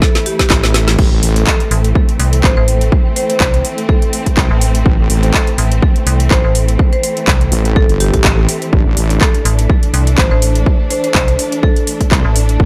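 Gritty and bouncy, this bass house excerpt in A minor moves at 124 BPM with a swung 16th feel. It opens on a drum fill as an overdriven, punchy electronic kick and a garage kit with woody snare, metallic hats, handclaps and crash drive it forward, joined at 0.5 seconds by a heavy, saturated wobble bass with chorus and at 1.7 seconds by a decaying FM bass, both sidechain-pumped. A rich, bowed string section holds pumping, low-pass filtered chords, while a bright, dry marimba plays a delayed melody in the background, set in a digital ambience.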